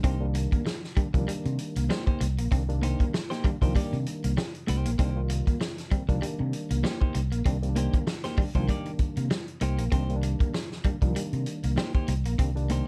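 Sly and driving, this dry, dark funk cut in C minor at 97 BPM swings its 16ths over a lone Cm7 for 12.9 seconds, built on an up-front vintage kit with a fat snare, tight kick and hi-hat, a round, amped fingered bass, a clean, compressed electric guitar comping, a slightly broken-up picked guitar riff with tremolo, and worn, slightly out-of-tune tine electric piano stabs that are lightly overdriven through built-in speakers.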